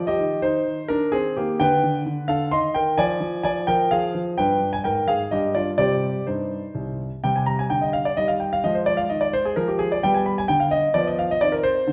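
A solo concert grand piano, up front with a deep bass, smooth vintage tone and short sustain, plays a restless, dramatic passage from a longer classical-period sonatina in a rubato triple metre, moving to a second section at 7.2 s over minor-key harmonies that close on C minor, all set in a wet recital hall reverb.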